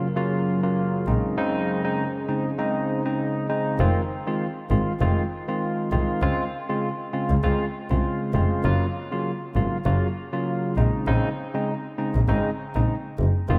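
Soaked in a lush hall reverb, this dreamy, hypnotic afrobeats cut moves at 99 BPM with a sultry, gently swung feel, drifting through Gbmaj7, Fm7 and Dbmaj7 harmony. A bright, barky tine electric piano with analog chorus carries the accompaniment up front throughout, while a deep, dark ambient pad of detuned sawtooth and sine layers holds sustained chords in the background until 3.8 seconds. A soft, pure bowed double bass, played sul tasto and sounding floating and distant, enters at 1.1 seconds and anchors the low end as the piece settles into its second section.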